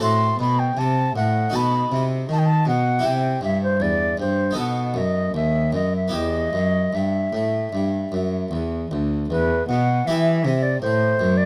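A bright wooden baroque flute carries the melody up front, its airy, straight, tongued tone sitting between B4 and C6 in this flowing, radiant excerpt from a baroque-style sonata movement in E minor. Set at 78 BPM in a straight 4/4, the movement is underpinned by a continuo of harpsichord and a single bowed cello, all three playing throughout. The cello holds the bass with a dark, reedy gut-string sound in period style, smooth at the top and placed close to the listener. The harpsichord fills in the accompaniment with a dry, close-miked, Italian-style voice, plucked across three sets of strings and rich with brilliance. The harmony moves from F#dim/A through B7, C and back to B7 before settling on Em, and a new section arrives at 9.3 seconds, turning toward Am near the close. Close, detailed microphones and a light reverb keep every line clear and intimate.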